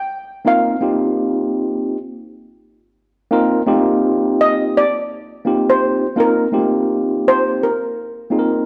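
Swung sixteenths at 84 BPM in 4/4 give this short, mellow and cool hip hop fragment its easy lean, as a shimmering, metallic yet dark and smooth steel pan, struck with hard rubber sticks, carries the up-front lead from 0.0 seconds while a clean, bright tine electric piano, heard through its built-in speakers, joins at 0.4 seconds to voice an F9sus4 chord beneath it, all set in a moderate recital hall reverb on a gritty hardware recording.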